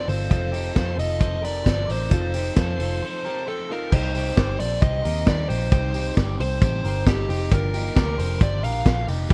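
Jangly indie pop with a youthful, breezy mood, moving in a straight 4/4 and cut from a longer piece. A fuzzy, compressed lead guitar carries the melody through a dark, warm mix with little reverb, while a round, foam-muted picked bass and a vintage drum kit with a punchy kick, high-tuned snare, crash, hi-hat and dark cymbals anchor the groove up front. Underneath, a guitar through a small old amp plays slightly broken-up, lo-fi arpeggios, and a crunchy overdriven guitar with phaser sits in the background. Very quiet chorused retro synth keys add glossy pulse-wave and sawtooth colour with a filter sweep, stepping forward with a fill during a break from 3.0 to 3.9 seconds. After that break the music moves into a new section that runs to the end at 9.3 seconds.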